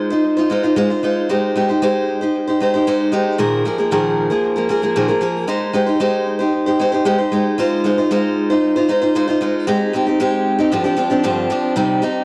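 A picked steel-string acoustic guitar opens alone and carries this short, reflective pop excerpt, its warm, up-front tone marked by audible finger squeak and a touch of analog delay. The straight 4/4 feel moves through a wistful cycle of chords, from Fm7/Ab to Abmaj7 and Bb7sus4 before settling on G7sus4 near 10.7 seconds. Light reverb and a small-room ambience give the cassette home recording an intimate, homespun character.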